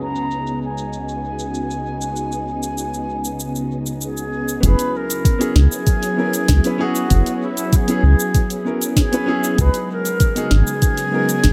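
A round, deep analog bass sits up front in this sunny, smooth sunset chillout excerpt, arriving at 4.6 seconds together with a soft, tape-tinged electronic kick, its sawtooth and sine tones colored by ring modulation and tube saturation. From the start, an airy, distant baroque flute carries the melody with gentle vibrato and tongued notes. An intimate grand piano, its action noise audible, plays accompaniment, while a silky vintage string machine holds slow-blooming chords through an ensemble chorus. From 0.2 seconds, a produced R&B kit adds a sharp snare, shaker and warm hi-hats, with tape echo on the drums, flute and piano. The echo-heavy, low-pass-filtered mix opens with a filter sweep and moves between C#9sus4 and F#9sus4 harmonies under light reverb.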